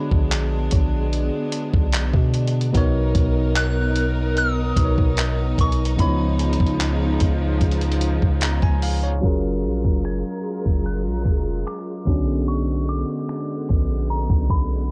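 A dusty sampler-style drum kit of thumpy kick, finger snaps, handclaps and hi-hat sits up front in this smooth, romantic contemporary R&B excerpt, alongside a deep, mellow 808-style bass, a bright, clean tine electric piano, a lush bowed string section, a soft FM synth bell with chorus carrying the melody, and a very quiet, dark pluck from 0.7 to 7.9 seconds, the mix wrapped in digital ambience with a gritty cassette-tape, low-pass-filtered character.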